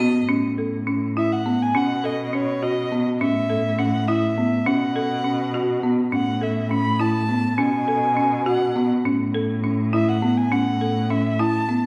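A straight 5/8 pulse at 205 BPM in eighths drives this hopeful, shimmering contemporary chamber excerpt in A lydian, where a rustic, hard-mallet folk marimba spins woody arpeggios over a bowed cello bass with expressive vibrato and portamento, while from 1.2 seconds a dark violin with a smooth top sings the melody as the harmony alternates between A and Bsus2 in a reverberant recital hall.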